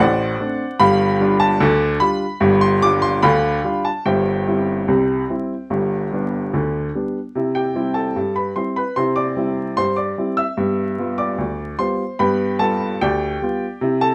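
Vinyl crackle and a moderate studio reverb frame this cheerful, playful ragtime fragment in C major at 74 BPM in a straight 2/4, where a woody, polished upright piano sits up front as the sole instrument, ranging from G1 to E6, tuned to A4 = 441 Hz, and moving into a new passage at 7.3 seconds before the clip, cut from a longer piece, ends at 14.1 seconds.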